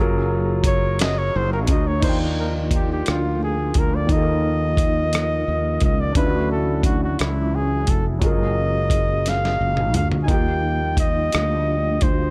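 This slow, tender R&B excerpt in a straight 6/8 at 58 BPM opens with a grand piano, intimate and long-sustaining with audible action noise and a dub echo, over a growly, up-front fretless electric bass thickened by ensemble chorus. A gritty, compressed sampler-style drum kit with a thumpy kick and medium-tuned snare arrives almost at once. It is heard up front, as if re-recorded in a small room, and it covers crash, hi-hat, rim click and toms. Moments later a close-miked, warm flugelhorn takes the sensual pop-style solo melody with light vibrato, its notes trailed by dub echo. At 2.0 seconds a very quiet, dark, lightly overdriven tonewheel organ slips in with sustained chords through a fast rotary speaker, as the harmony moves through lush major-ninth chords from Gbmaj9 to Ebmaj9 and Dmaj9. A drum fill at 9.3 seconds leads back to Ebmaj9 in a dry, echo-heavy mix.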